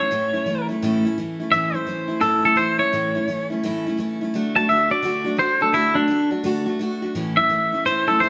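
Retro and rollicking, this brief rock excerpt moves at 170 BPM in A major with a swung eighth-note feel. A bright, twangy electric guitar carries a clean, compressed solo melody up front, while a picked steel-string dreadnought acoustic guitar gives warm accompaniment with audible finger squeak, the chords moving from A to D at 4.3 seconds and back to A at 7.1 seconds. The two guitars sound like a band playing live together in a stone room with a wet, lingering reverb.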